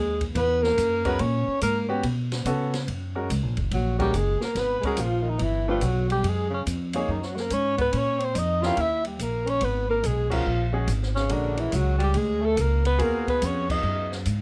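A mellow alto saxophone carries the melody up front, its smooth top and vibrato softened by plate reverb, in this cool, late-night slice of small-group swing and bop cut from a longer piece. Beneath it, a breathy tenor saxophone traces a second line with a soft attack and a whispered, intimate vibrato. A pizzicato upright bass with steel strings sits forward with a woody, warm tone. An acoustic drum kit in a natural studio room adds dark cymbals, a high-tuned snare and a boomy kick. A clear grand piano enters with accompaniment at 1.1 seconds, moving through extended chords toward an altered dominant and a closing minor ninth. The band hits accents together at 10.3 and 13.6 seconds, and a light reverb surrounds the group.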